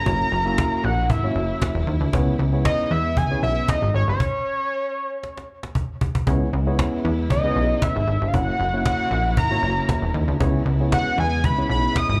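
Danceable and slick, this early-eighties boogie funk is cut from a longer piece and sounds like a live gig heard through a venue's PA, with a light club reverb. A fat, detuned sawtooth lead with a sub octave and a filter sweep carries the melody up front, its sustained notes treated with slapback and tape echo. Beneath it, a punchy, plucky analog bass mixing sawtooth and pulse-wave tones sits just as far forward, while a worn, slightly out-of-tune tine electric piano plays clean accompaniment through its built-in speakers with its own slapback echo. A dark studio string section stays in the background with lush, bowed sustained chords, full of vibrato and portamento. A woody, close and dry cajon with faint snares drives the groove, and the band hits a stop at 4.2 seconds before the cajon plays a fill from 5.2 seconds that leads back into the repeated section at 6.3 seconds.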